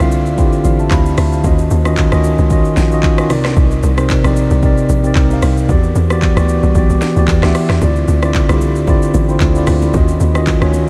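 A dreamy, reverb-soaked mix with a huge ambient tail frames this late-night amapiano excerpt at 113 BPM, swung lightly on the sixteenths, as a mellow, clean tine electric piano sits up front over minor ninth chords from Dm9 through Ebm9, Cm9 and Em9. Beneath it, a hollow, bouncy log drum bass with a fast attack and decaying tail carries the low end, while an up-front electronic drum kit with a deep kick, sharp snare, metallic hats, handclaps, rim click and shaker carries a gritty vintage sampler edge. The kick drops out briefly at 7.8 seconds, just as very quiet, bright congas and bongos played with soft hands join for the final stretch.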